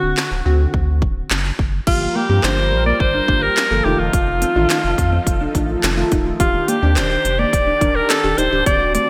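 A bright alto saxophone leads this energetic, bittersweet dance-pop excerpt, its forceful, punchy solo line sitting up front with vibrato, scooped notes and a smooth top, trailed by delay. Beneath it, a glassy wavetable pluck and a deep, round sub bass both pump to the sidechain at 106 BPM in a straight 4/4, while a house drum kit enters at 0.2 seconds with a punchy kick, cracking snare, crisp hats, handclaps and crash cymbal, all wrapped in gated reverb. At 1.9 seconds a filtered supersaw swell enters in the background with airy, evolving sustained chords and lush chorus, and a dark, clean electric guitar riff joins at 2.0 seconds, fingered and compressed behind the mix. The harmony in G minor moves from D7 to Gm7, then F7 and Ebmaj7, giving the cut a yearning lift. A moderate hall reverb and digital ambience give the whole production a bright 1980s-style gloss.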